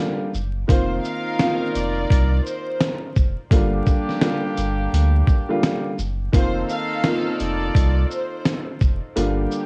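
A swung 85 BPM boom-bap groove from a dusty, gritty sampler-style drum kit with a thumpy kick, fat snare, hi-hat and shaker (the kick drops out at 9.2 s) anchors this reflective hip-hop fragment, where a deep, round sine sub bass and a dark, woody upright piano with audible action noise move between Gm7 and F7sus4 while punchy horn stabs and a lush, bowed violin section carrying the melody from 0.7 s sit under cassette-tape haze, analog delay, light reverb and vinyl crackle.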